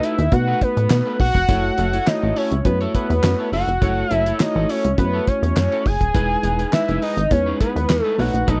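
Early-eighties boogie funk with a slick, late-night mood, this short excerpt moves in a straight 4/4 over B7, F#m7 and Emaj7 chords. A fat, detuned analog lead carries the melody with vibrato up front, while a clean tine electric piano plays the accompaniment and an electric guitar at the edge of break-up plays a twangy riff through a subtle chorus. A damped 70s drum kit with a fat snare, tight kick, hi-hat and handclaps drives the groove, joined at 0.2 seconds by a punchy, plucky analog bass, all captured in a dry, close 1970s-style studio sound.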